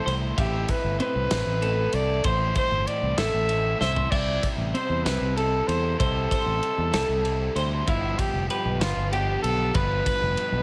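Math rock and midwest emo in a straight 6/8 at 64 BPM, this short, playful and bright C major excerpt moves from Amadd9 to C6 at 4.1 seconds and G13 at 7.9 seconds. A warm trumpet with light vibrato and scooped notes carries the melody up front, while a twangy, compressed twelve-string electric guitar rings out clean arpeggios under plate reverb. A double-tracked overdriven guitar sits crunchy in the background, a growling fingered bass pushes forward with overdrive, and a loose, punchy indie drum kit with dark cymbals drops a fill at 3.8 seconds.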